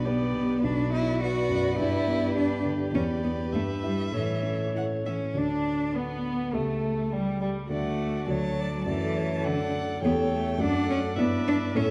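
Cheerful and lively, this quick classical-period movement for piano quintet moves at 103 BPM in a straight 2/4 in D major, cut from a longer piece. A single bowed violin carries the melody with a soft attack, expressive vibrato and portamento, sitting close in the sound, while a second violin of rich, even tone adds a smooth second line. The cello adds its own focused, close line in the low register, and the viola, smooth and in the background, joins the up-front dark grand piano in accompaniment, the piano sounding mellow and vintage with long sustain. The harmony opens on G/B and Bm before arriving on A at 4.1 seconds, and a second section from 5.4 seconds moves between D and A7 chords before closing on Em7/G. A wet scoring-stage reverb and a dark, warm production surround the ensemble, with a faint mains hum underneath.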